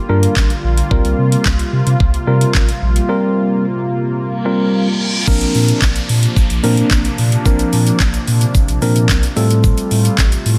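Summery and euphoric, this short dance-pop excerpt moves at 110 BPM in a straight 4/4, cut from a longer piece. A mellow analog pad built from sawtooth and triangle tones with a sub octave holds sustained chords through a chorus effect, its slow attack and long release breathing with sidechain pumping, while a clean, up-front tine electric piano plays accompaniment and pumps along with it. Underneath, a deep, round sine sub bass with a fast attack sustains the low end, also ducking to the sidechain. A produced electronic R&B drum kit sits up front with a knocking kick, sharp snare, metallic hi-hats, handclaps, shaker and crash cymbal. The harmony moves from Gm7 to C7sus4, and after a reverse cymbal and downlifter enter at 4.5 seconds, the second half opens on Bbadd9 at 5.3 seconds, where a grainy, very quiet acoustic egg shaker joins, before settling on Fadd9 at 9.4 seconds. The mix is dry, with little reverb.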